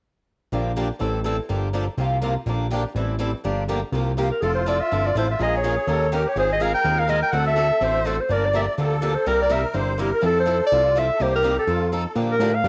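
A brisk, swung 4/4 pulse drives this charming, lively slice of acoustic string swing, cut from a longer piece. Two picked acoustic guitars carry the accompaniment from 0.5 seconds: a bright swing-style guitar with fresh strings and audible finger squeak, and a boxy, parlour-toned steel-string guitar sitting in the background, both dressed in plate reverb. Beneath them, a fat analog bass sits up front with a saturated, detuned blend of sawtooth and square-wave tones, a fast-attack filter pluck and sustained notes. At 4.2 seconds a warm clarinet takes the solo melody with vibrato and a soft attack, and at 4.4 seconds a reedy musette accordion adds a shimmering second line. The harmony moves through sixth and seventh chords, and the room carries a wet studio reverb and the homespun character of a cassette home recording.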